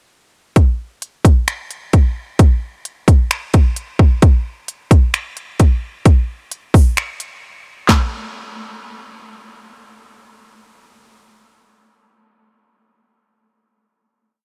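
The recording is dry, with little reverb, and the drums sit up front. This is a complete hip hop piece at 131 BPM in 4/4 with a half-time feel, and its mood is blissful and floating. The only part is an electronic, produced trap drum kit of kick, snare, hi-hat, handclaps and finger snaps, playing a sparse half-time beat from 0.6 to 8.0 seconds. The kick is hard-clipped, the snare sharp and the hats crisp. A short break arrives at 7.4 seconds, and a final hit section runs from 7.9 seconds to the close at 11.6 seconds.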